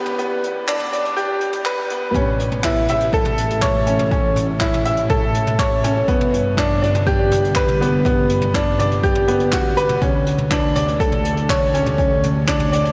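Luminous and hopeful, this piano and strings electronica moves at 122 BPM in a straight 4/4, cut from a longer piece. A bright upright piano plays the riff up front, intimate and woody, with audible action noise, short sustain and a diffuse ambient delay trailing behind it. Beneath it a dark symphonic double bass section plays the bass line, bowed and lush with vibrato, pumping against a sidechain. A jazz brush drum kit adds handclaps, hi-hat and toms with a natural small-room sound. After a short build-up over Em7, the drop arrives at 2.1 seconds, where a punchy, overdriven electronic kick joins as the chords move through A, Gmaj7 and D5. The whole mix is dreamy and soaked in a cathedral reverb, shaped by a high-pass filter.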